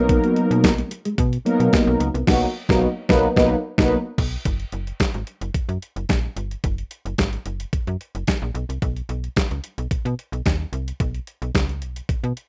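Round, brassy sawtooth synth brass with chorus, phaser and plate reverb holds a Bmaj7 up front until 4.0 seconds in this smooth, danceable early-eighties boogie funk at 110 BPM, alongside a brief, dark, clean electric guitar riff with lush chorus in the background, while a snappy, metallic slap-like FM bass and a thumpy, tape-toned, detuned 8-bit drum machine of kick, snare, hi-hat, handclaps and crash drive through a band accent and on into a chord-free stretch from 4.5 seconds, heard in a rough home demo mix with light reverb.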